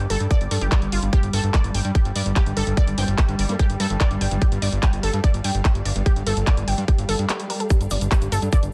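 A dense, heavily limited modern master in a digital ambience carries this intense, alien psychedelic trance excerpt at 146 BPM in a straight 4/4, built on a G5 chord, with a tight, up-front electronic kick, a layered drum kit of handclaps and hi-hat, and a fat, saturated analog bass rooted between G1 and G2. A punchy, bright detuned unison pluck riff with sidechain pumping and dub echo runs over a swarming, nasal drone of sustained chords that breathes with its own pumping, while a very quiet, dark string section adds woody, bowed texture beneath. A formant-sweep wobble bass appears briefly at 3.0 s, a very quiet electronic swell arrives at 7.1 s just before a short break at 7.3 s, and a grainy egg shaker enters at 7.7 s.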